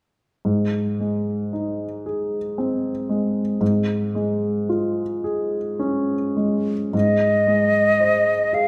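Tender and lyrical, this romantic classical excerpt for flute and grand piano moves in a slow, rubato 3/4 at around 51-58 BPM in Ab major. The intimate concert grand opens alone at 0.4 s with deep bass and audible action noise, shifting from Ab to Db over an Ab bass. At 6.9 s the silver flute enters up front with an airy, vibrato-laden tone and a soft attack, singing its melody above the warm piano as the harmony returns to Ab, all bathed in a resonant recital-hall reverb.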